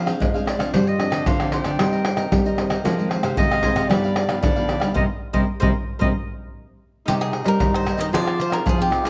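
This lively, nostalgic samba and choro excerpt in C minor opens with a warm, classical-style clarinet solo, backed by a thumb-plucked nylon-string guitar bass line with fresh strings and a full-bodied, fingerpicked nylon-string guitar whose finger squeak can be heard. A crisp, picked cavaquinho sits up front in the accompaniment, while egg shaker, pandeiro, tamborim and a deep surdo play with hard hands in a vintage, band-limited tone near the front of the mix. At a straight 113 BPM in 4/4, the harmony moves through Dm7b5/F, G7sus4, Cm7/G, Fm7 and G7b13 before landing on Cm7, where the band plays an accent from 5.0 seconds. At 7.1 seconds, the clarinet's solo ends and a mellow second cavaquinho takes the melody as the section shifts, and the chords then turn to Fm7 at 8.1 seconds. A moderate large-studio reverb gives the ensemble a roomy, acoustic sound.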